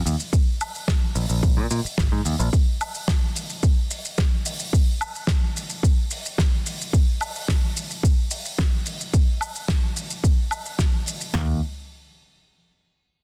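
A dense, heavily limited modern mix with light reverb carries this feel-good, groovy nu-disco excerpt, where an up-front electronic house kit with a punchy kick, snare and toms is layered over a dry, airy 70s acoustic kit of hi-hat, shaker, fat snare and woodblock, while a direct, amped picked electric bass plays from 0.1 to 2.5 seconds and returns briefly at 11.3 seconds.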